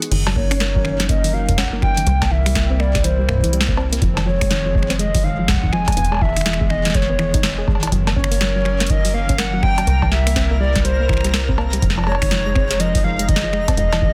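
IDM at 123 BPM in Gb lydian with a swung 16th feel, intricate and glitchy, where a deep, tape-warm electronic kick and a booming analog drum machine with crisp snare, metallic hats, cowbell, crash, finger snaps and digital delay join a dark, decaying FM bass, while a round, nasal pluck plays chorused, delayed arpeggios alongside a hollow, flute-like pad, a warbling, nostalgic lead with vibrato carries the melody from 0.4 seconds, and a twinkling granular texture glimmers in the background from 8.4 seconds, all within a dense, heavily limited modern master cut from a longer piece.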